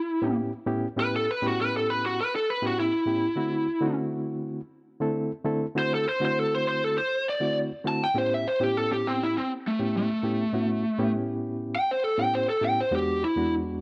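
A gritty, laid-back blues in A mixolydian at 100 BPM, this short excerpt from a longer piece is built around a dark, overdriven electric guitar, picked through a small cranked amp and set up front as it solos from A3 to A5 across the whole passage. A clean, reedy electric piano with fast tremolo supports it from 0.2 seconds, moving through A9, D9 and back to A9 before turning to E9 at 12.9 seconds. The sound is dry and close, in the manner of a 1970s studio recording with a touch of digital ambience.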